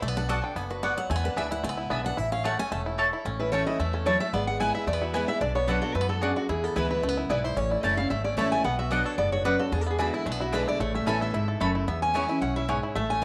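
A bright, full-bodied dreadnought guitar carries the melody from 3.4 seconds, sitting highest in the mix in this joyful, driving bluegrass clip cut from a longer piece. Underneath, a second steel-string guitar picks a warm, up-front accompaniment with audible finger squeak, while a twangy, percussive banjo played with fingerpicks plays arpeggios from the very start. A mandolin adds bright, woody stabs on its doubled strings from 0.3 seconds. A pizzicato upright bass gives a warm low end. At a quick 223 BPM in 4/4 with only a light swing, the tune stays in A major, moving through chords such as Bm, E7 and A before landing on an E6, all set in a moderate echo-chamber reverb with small-room ambience.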